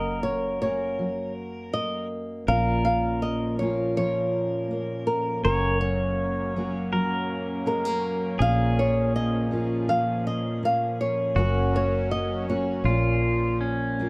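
Close, detailed microphones and light reverb frame this melancholic, intimate acoustic folk-pop ballad in Bb minor, moving at 81 BPM in a straight 4/4 as it sways between Gb and Bb minor. An up-front, fingerpicked flamenco guitar carries the melody until 13.2 seconds, joined by a bright, twangy pedal steel guitar second line with slide and volume swells, while a full-bodied dreadnought steel-string guitar fingerpicks the accompaniment with audible finger squeak over a round, foam-muted electric bass. From 2.5 seconds a brassy, detuned sawtooth pad with chorus, vibrato and a soft attack sustains chords in the background until this excerpt cuts off at 14.1 seconds.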